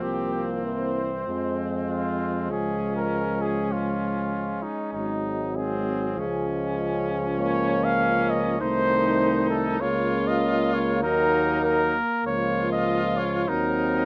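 A warm cornet with light vibrato carries the melody up front in this solemn, grave classical brass quintet passage, moving at 98 BPM in a straight 4/4 and settling into Bb minor from 7.4 s. Beneath it, a clear trumpet with vibrato sings a second line while French horn and euphonium fill in the accompaniment, the euphonium sitting in the background. A bright bass trombone with vibrato anchors the bass, and these four parts sound distant and roomy in an otherwise close, detailed recording that is cut from a longer piece.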